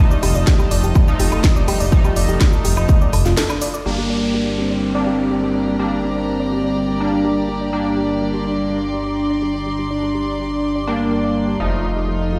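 A straight 4/4 pulse at 124 BPM drives this dark, propulsive melodic techno excerpt in G minor, with a punchy, up-front electronic kick and a house kit of cracking snare, crisp hats, shaker and woodblock in a layered, produced style. Beneath them, a deep, rumbling detuned saw bass with tube saturation pumps against the sidechain. An edgy, nasal sync-sweep polysynth punches out bright stabs soaked in chorus, cassette tape colour and dub echo, while a soft, round pluck spins arpeggios in the background and a rich, earthy chamber string section holds a bowed texture above. After a short break and a full-band accent, the drums fall away and a smooth, expressive synth lead with vibrato enters at 3.9 seconds as the chords shift from F7 to Gm, a filter sweep moves through the polysynth, and a downlifter passes through. An evolving, morphing wavetable pad slips in very quietly at 5.7 seconds, and the whole mix rings out through a big sound system in a bare stone room.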